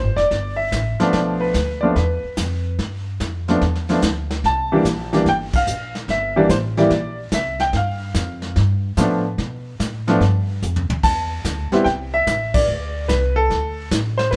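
Swinging and playful, this short cut from a longer jazz piano trio piece moves in a lilting swung four over changes that circle G7 and C7 before touching Am. A clear, up-front grand piano carries the melody over woody, thumpy pizzicato upright bass, while a vintage brush kit with dark cymbals, a tight kick and a rolled-off top enters just after the start. The band hits accents together at 5.5 and 12.5 seconds, with a brief drum fill at 10.6 seconds, all played live in one room with light reverb.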